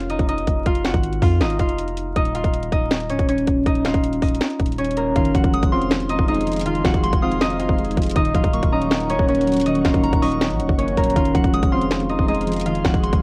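A fingerpicked concert harp carries the melody up front, its mellow, ringing tone softened by cassette tape, in this eerie, brooding trap cut from a longer piece. It moves at 160 BPM in a half-time feel in F phrygian, over a trap kit of hard-clipped kick, sharp snare, metallic hi-hats and finger snaps that also sits up front with a cassette-tape grain, while a deep, sine-toned 808-style bass holds long, decaying notes underneath. At 5.2 seconds, round electric-piano-like synth keys enter with chorus and tremolo, adding a dark, gentle accompaniment as the chords move between Fm7 and Ebm7. A pure FM synth bell follows at 5.5 seconds as a second line in the background, treated with chorus, phaser and analog delay. At 5.7 seconds an ethereal, airy pad of detuned sawtooth and triangle voices swells in slowly with sustained chords, blurred by ensemble chorus and its own reverb. The home-cassette recording sits in light reverb with a bed of vinyl crackle.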